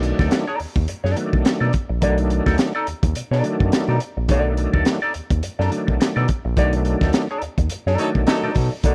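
A crunchy, saturated breakbeat kit, a round and deep analog bass, a thick overdriven tonewheel organ with slow rotary speaker stabs, and a clean electric guitar through wah and lush chorus all start together in this playful, gritty funk groove with a swung sixteenth-note feel, sitting on a B7#9 chord. The dry, close 1970s-style studio sound keeps the drums, bass and organ up front. The band hits an accent from 6.6 seconds, and a punchy horn section with light vibrato enters at 8.0 seconds with a brief second line.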